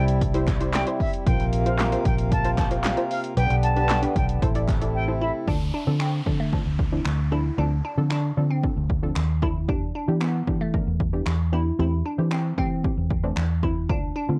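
A lightly reverberant home cassette recording carries this bittersweet, driving dance-pop excerpt in D minor at 114 BPM, where a tape-warm, punchy analog drum machine and a dark, round muted electric bass sit up front beneath sidechain-pumped chorused sawtooth chord stabs, distant group handclaps, and reedy pedal harmonium chords. A distant silver concert flute with vibrato and analog delay sings the opening melody over the harmonium, then the drums drop out from 4.9 to 5.5 seconds. A crystalline wavetable pluck takes over the melody from 5.2 seconds, and an electronic downlifter falls from 5.5 to 9.7 seconds in the next section, where the chords settle on Dm7, Em7 and Am7/E.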